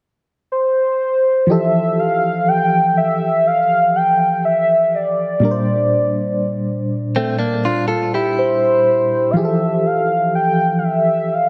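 A dreamy, reverb-soaked mix with a long hall tail gives this short R&B fragment, cut from a longer piece, a tender, smooth mood and a slow, gently swung feel. A velvety synth lead carries the melody from 0.5 s, its mellow sawtooth-and-triangle tone thickened by unison, wave folding, vibrato, chorus and tape echo, and it sits up front in the upper register. At 1.5 s an FM electric piano joins as accompaniment, dark and full-bodied with a noise layer and a trembling tremolo, laying down Fmaj9 before moving to Bb69 and back. Around 7.2 s a clean, direct-recorded electric guitar adds brief picked arpeggios, bright and compressed, dressed in lush chorus and tape echo. The piano and guitar sit a little beneath the lead, keeping the focus on the sustained melody.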